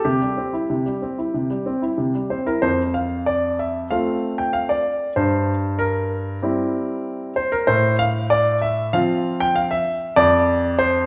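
A straight, steady 4/4 pulse at 95 BPM carries this brief, dramatic and elegant classical-period piano sonatina in F major, cut from a longer piece. A solo baby grand piano, polished and placed up front, plays from F2 to G5, moving from C through F and C7/G to F/A before settling on an open F5 at 10.2 seconds. The clear, present tone rings into a wet recital-hall reverb that gives the performance the spacious air of a church or concert hall.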